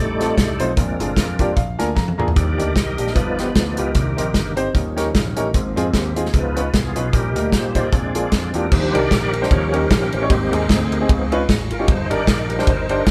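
Captured with a light reverb as a band playing live in one room, this jubilant, hopeful stretch of swung uptempo gospel is led by a reedy, lightly overdriven tonewheel organ with key click, chorus vibrato and a slow rotary speaker, soloing over sustained chords throughout, while a dark, round overdriven picked electric bass holds the low end, a clear but worn grand piano with short sustain accompanies and drops in a fill at 1.2 seconds, and an up-front acoustic country drum kit with dark cymbals, a medium-tuned snare and punchy kick adds a brief fill at 2.0 seconds.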